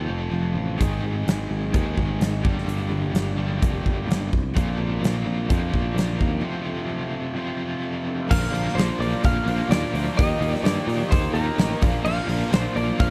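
Driving and swaggering, this classic rock clip, cut from a longer piece, moves in a straight 4/4 with two biting overdriven guitars playing riffs from the start, one bright and the other carrying a tremolo effect. A growly, up-front electric bass and a very quiet jumbo steel-string acoustic guitar, full-bodied with audible finger squeaks, fill out the bottom and middle, while a huge arena drum kit with a fat snare, punchy kick and bright cymbals enters at 0.8 seconds in a pumping hall sound. After a break from 6.4 seconds, the second section at 8.3 seconds brings in a lightly driven, compressed lead guitar carrying the melody with slapback echo, backed by a very quiet double-tracked semi-hollow guitar riff. A tonewheel organ arriving just before, at 8.0 seconds, adds sustained chords through a slow rotary speaker, and a very quiet, polished grand piano with long sustain adds accompaniment. 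A small room ambience surrounds the mix.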